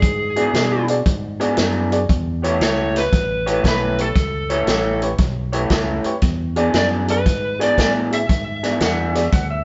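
The band plays live in one room, with light reverb and a muted top end. This is a soulful, laid-back electric blues shuffle in a swung 4/4, moving from E7 to A7 and back to E7. A dark, overdriven lead guitar through a small cranked amp carries the melody over a round, fingered electric bass and an up-front vintage drum kit with a tight kick, a medium-tuned snare and hi-hat. From 0.4 seconds, a slightly broken-up, lo-fi electric guitar plays a riff while a mellow, woody upright piano, boxy and slightly detuned, fills in the accompaniment. A clean lap steel slide line slips in at 8.8 seconds, near the end of this short cut from a longer piece.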